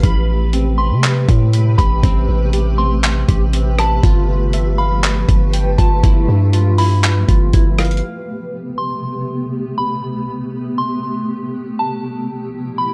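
A gritty, pitched-down boom bap drum kit with a thumpy kick, handclaps, hi-hat and rim click sits up front beside a deep, mellow sine 808 bass in this hazy, spacious cloud-rap fragment at 120 BPM in a half-time 4/4 feel, moving between Am9 and G13 in A minor. A cloudy, evolving granular pad holds sustained chords throughout, a glassy, crystalline wavetable pluck spins arpeggios through chorus, low-pass filtering and digital delay, and from 0.8 seconds a soft, warbling vintage FM bell carries the high melody. At 8.0 seconds the drums, bass and pluck stop, leaving the blurred pad and pure bell floating in a dark, dry mix.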